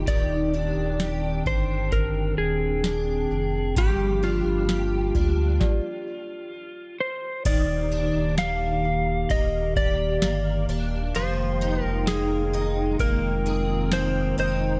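A booming analog drum machine, dry and up front with a deep kick, tonal snare and metallic hats, anchors this haunting, melancholic dream pop piece, cut from a longer work, and it halts at 14.1 s. A slightly broken-up electric slide guitar carries the melody with tape echo over a deep, full sub bass with octave, while a shimmering, octave-doubled twelve-string acoustic guitar picks arpeggios and a warbling, nostalgic lo-fi pad sustains detuned chords with chorus. A delicate, bell-like celesta glints in the background, and after a stop at 5.6 s the second section arrives at 7.5 s, all within a dark production touched by light reverb and digital ambience.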